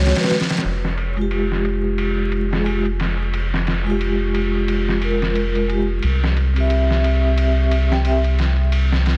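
Melancholic and dark, this trip hop excerpt sets a mellow, close-miked vibraphone with soft mallets, tremolo and tape echo over a round, up-front analog bass with tube saturation, while a gritty, pitched-down boom bap sampler kit with low-passed snare and ride cymbal swings beneath, all colored by vinyl crackle and a dense, heavily limited master as the harmony moves from Fmadd9 to C at 6.0 seconds.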